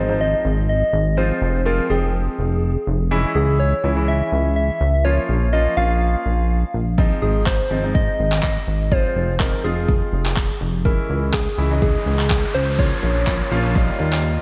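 A straight 4/4 dance-pop groove at 124 BPM, euphoric and summery, rides on a glossy, chorused synth bass of pulse and sawtooth waves with a filter pluck and sidechain pumping. A polished baby grand piano, also pumping, moves through Ab6, Fm, Dbm and Bbm beneath a round, gentle FM synth lead with chorus, vibrato, slapback echo and delay. A tape-warm deep house kit of deep kick and handclaps arrives up front at 7.0 s, and an electronic impact opens this fragment of a longer piece before a noise sweep from 11.7 s leads to a break at 14.2 s, in a light digital ambience.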